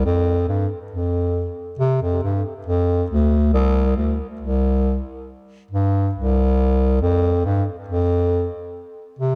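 Reggae in a meditative, hypnotic mood, this short passage cut from a longer piece features a single bass clarinet playing alone throughout its 9.4 seconds. The instrument sits up front, its mellow tone delivered in a classical style and confined to a low register spanning C2 to C3. A tape echo trails the clarinet's phrases, adding a repeating shadow that deepens the trance-like atmosphere. Light reverb surrounds the sound, and the overall production leans dark and warm. The result is an unhurried, introspective fragment built entirely on the reedy depth of one voice.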